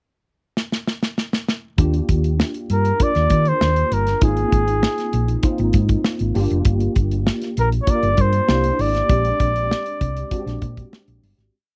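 A dry, close studio sound frames this glossy, urban 1980s jazz-funk pop piece in Eb major at 98 BPM, where a punchy modern drum kit opens with a fill at 0.6 seconds before settling into a crisp sixteenth-note groove, a round, dark hollow-body bass plays an agile syncopated line, a worn, slightly out-of-tune tine electric piano with ensemble chorus pushes rootless chords with grace notes, and a veiled, breathy bucket-muted trumpet states motif-based call phrases in a jazz style, before the piece fades out from 9.1 seconds.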